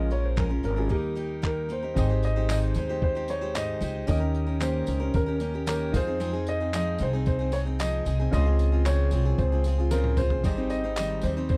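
Sunny and heartfelt, this excerpt of acoustic pop moves at 113 BPM in a straight 4/4 in Ab major, with a dark, mellow upright piano carrying the melody over a clear concert grand in the background, a bright, full-bodied picked steel-string guitar with audible finger squeak, and a woody, up-front pizzicato upright bass on gut strings. A gritty, compressed sampler-style soul kit with a thumpy kick, fat snare, handclaps, tambourine and toms comes in at 0.1 seconds, a jingly separate tambourine sits low behind it from 2.0 seconds, and the kit plays a fill at 9.9 seconds. Chords run from Bbm7 and Eb into Abmaj7, Eb7, Fm7 and Dbmaj7 before landing back on Abmaj7 at 10.4 seconds, all in a dry, close 1970s-style studio sound.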